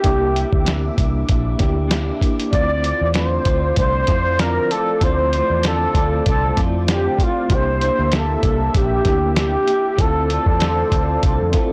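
Lonely and wistful, this short excerpt of bedroom-flavoured indie pop moves at an easy pace with a gentle swing, alternating between C9 and Dm7 chords. A breathy, whispered trumpet carries the melody up front, its soft attack, scooped notes and light vibrato made more intimate by an ensemble chorus and a slapback echo. Beneath it, a thumpy, muffled lo-fi sampler-style kit sits prominently with a fat snare and hi-hat, while a dark, foam-muted fingered bass gives round, punchy notes through tube saturation until 11.5 seconds. In the background, a slightly broken-up electric guitar through a small old amp wavers with analog chorus and drifting pitch, and a reedy electric piano adds light overdrive, fast tremolo and a cassette-tape tone. A mellow, detuned sawtooth pad holds sustained chords with a slow attack and chorus, and the whole recording is blown-out and overdriven, set in light digital ambience.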